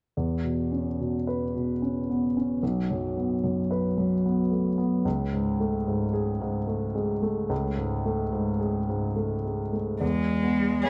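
An intimate, tender neoclassical piece for piano and strings, cut from a longer work, moves at 73 BPM in 3/4 with a loose, rubato feel in E major, tuned to A4 = 439 Hz. An upright piano carries the accompaniment from 0.2 seconds, its woody tone up front with long sustain, ranging from B1 to C#5 over chords that move from E5 to B5, then Amaj7/C#, and settle on E. At 10.0 seconds a single bowed cello enters as a second line between G#3 and B3, close and expressive, with rich vibrato and portamento. A solo violin arrives at 10.8 seconds on a focused, bowed G#4 carrying the melody. Light reverb and a dark, warm production give the recording a soft glow.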